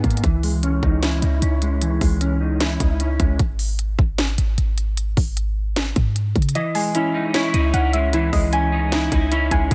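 A half-time trap groove at 152 BPM drives this menacing, hard-hitting hip hop excerpt in 4/4, with a produced drum kit of hard-clipped kick, sharp snare and crisp hats sitting up front beside a deep, boomy 808-style bass, while a dark, clean, fingered electric guitar under ensemble chorus and a low-pass filter outlines C#madd9 until it drops out at 3.4 seconds and returns at 6.6 seconds, when the kick briefly falls silent and a thumb-plucked concert harp adds ringing arpeggios through tape echo, joined at 6.8 seconds by a soft, round pluck carrying a gentle second line with chorus and tape echo, all in a dry mix.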